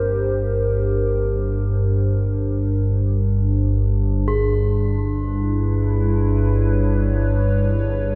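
Dark and unsettling, this dark ambient drone piece sits on an ominous, rumbling low drone, up front and treated with its own reverb and phaser, while a moody, detuned analog pad sustains chords from Gm to Bmadd9 through chorus and phaser, fading out across the passage. At 4.3 seconds a bronze singing bowl enters, its bright, metallic ring struck with a wooden striker and carrying a slow, meditative beating. A cavernous cathedral reverb bathes the sound, and the passage is cut from a longer piece.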